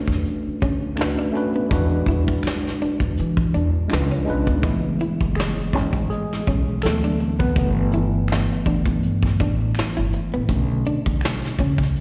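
Late-night and smooth, this neo-soul R&B excerpt sets a worn, slightly out-of-tune tine electric piano with light overdrive over a woody, thumpy upright bass and a vintage kit played with brushes, with a faint egg shaker and finger snaps and a dark, clean hollow-body jazz guitar carrying a second line through slapback echo, before the piano takes a solo from 4.6 seconds, all heard as a live gig through the venue's PA with recital hall reverb.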